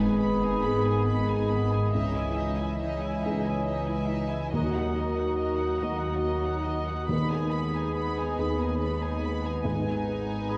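A slow, rubato lilt in six moves this cinematic fragment of a longer piece, its sorrowful, moving mood deepened by a dark recital-hall reverb. A violin section carries the melody high and sul tasto, floating and pure with a soft attack, while a second, very quiet violin line sits closer beneath it. Woodwinds and brass weave supporting lines: a distant, roomy cor anglais holds a single note, a mellow clarinet murmurs in the background, an airy flute section adds crisp-edged breath, and a dark, tight French horn section sustains chords. A felt-muted upright piano, soft with audible action noise, and a rich viola section provide accompaniment, while a ringing, thumb-plucked concert harp spins arpeggios, all above a bass of intimate cellos and deep, dusky double basses. Timpani on calf heads sound briefly at the start, then return from 4.5 seconds to the end, as the harmony turns from G#m through C#madd9 and D#m back home to G#m.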